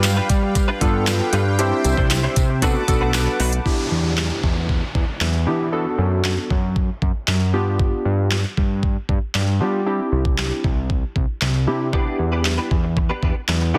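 This bittersweet, confident dance-pop excerpt opens with a fat, detuned analog bass and an up-front smooth R&B drum kit with a knocking kick, deep snare, handclaps and smooth hats, all sounding together from the start with round, chorused analog keys, a mellow supersaw holding chords, a clean picked electric guitar riff and a jingly tambourine, with the bass, keys and supersaw pumping from sidechain. The supersaw, guitar and tambourine drop out around 3.6 seconds as an electronic downlifter enters, and the compressed guitar riff returns at 11.9 seconds. The dense, heavily limited mix carries light reverb.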